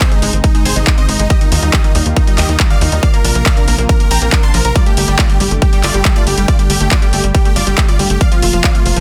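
Soaring and emotional, this uplifting trance excerpt is led by a huge, euphoric, detuned supersaw melody with delay, joined by a round analog pluck second line, while a second chorused pluck spins arpeggios carrying a noise layer and filter sweep, and a silky, string-like pad with ensemble chorus and vibrato holds sustained chords in the background. An overdriven, layered electronic kick sits up front with a tape-toned analog drum machine supplying handclaps and hi-hat, and a tight, nasal sequencer bass joins at 0.2 s. Sidechain pumping makes the lead, plucks, pad, bass and hats breathe together in a dense, heavily limited modern master with little reverb, moving through chords from Ab to Fsus4.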